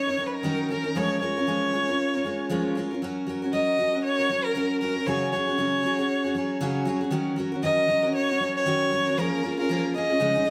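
A bowed violin and a picked steel-string acoustic guitar start together, both up front in this easy-going, heartfelt pop excerpt at 117 BPM in 4/4, with a 16th-note swing. The dreadnought guitar gives a bright, full-bodied accompaniment through chords that begin on D#m7 and pass through F# and C#sus4 before returning to D#m7. Over it, a single violinist plays the melody with a warm, focused tone and vibrato, colored by tape echo. The pair play live in a stone room, and its reverb adds a wet sheen to the sound. Both instruments carry on together through the full 10.5 seconds of this fragment cut from a longer piece.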